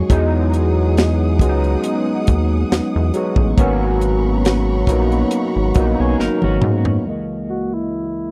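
A barky, overdriven tine electric piano anchors this smooth, late-night neo-soul R&B excerpt with gritty chorus-tinged chords, over a rubbery, bouncy square-wave bass, a tight, dry funk kit with a medium-tuned snare, and a soft bed of bowed strings with vibrato and portamento, moving from Emaj9 to G#m11 with a gentle swing. At 6.0 seconds a slightly broken-up, twangy electric guitar slips in with harmonic tremolo and tape echo as the drums play a fill, and after the band drops away at 7.0 seconds, the piano carries a filter sweep onto C#m69. A dark, breathy tenor saxophone enters at 7.5 seconds with a growling, raspy solo phrase, all captured in a close, dry 1970s-style studio sound.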